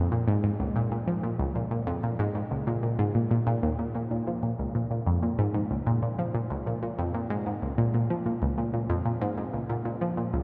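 Soaked in a cathedral-sized reverb, this mysterious, cosmic ambient excerpt in Bb minor at 94 BPM features a lone analog pluck, bright, nasal and detuned with a sawtooth bite, a noise layer and a filter sweep, sitting up front through chorus, phaser and tape echo in a low range from Db2 to F3 for the full 10.4 seconds.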